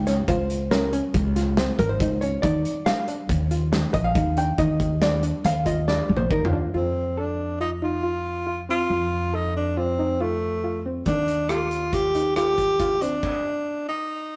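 A dark, compressed hollow-body jazz guitar solos over a mellow, chorused synth pluck's arpeggios, thumpy gut-string upright bass and a loose indie drum kit with a punchy kick in this driving, intricate progressive instrumental in 5/4 at 139 BPM, moving through Dbmaj7, Ebsus2, F7 and Ebmaj9 in Eb lydian, until a drum fill hands off to a breathy, close-miked tenor saxophone melody with scooped notes at 6.8 seconds, and the band stops at 13.2 seconds, all heard in a rough rehearsal-room recording with tube saturation and a moderate stone-room reverb.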